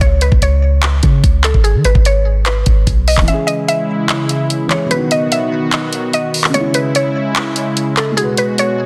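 A woody, round mallet-like synth pluck, softened by a low-pass filter with chorus and digital delay, opens this eerie, menacing trap excerpt at 147 BPM in half-time, alongside a deep, boomy 808-style sine bass and an up-front trap kit with a knocking kick, bright hi-hats and handclaps. At 3.3 seconds the bass drops out for a break, as a dark, boxy grand piano with long sustain and a smooth, detuned sawtooth pad with chorus fill the harmony through E6, B, C#m and G#m7 in C# minor. Light reverb and digital ambience sit around a dense, heavily limited modern master, and the drums stop at 8.7 seconds.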